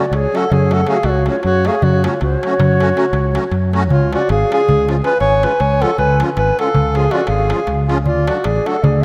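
Bittersweet and restless, this Balkan wedding-band fragment of a longer piece races along at 318 BPM counted in eighths, in a straight 11/8 and F# harmonic minor. Up front, a mellow alto saxophone carries the solo melody in a classical style, with a soft attack, light vibrato and a smooth top. Above it, an airy bamboo bansuri plays a second line with vibrato and rolled-off highs, and both wind parts trail an analog delay. A musette accordion supplies reedy, shimmering accompaniment in its wet tuning, while a fingered electric bass, direct and amped, sits forward from 0.1 s, and a metal-shell darbuka, close and dry with hard hands, adds crisp percussion. The harmony moves from F# minor to C# at 3.9 s and reaches D at 8.1 s, and a lush hall reverb of 2.5 s soaks the mix in a dreamy haze.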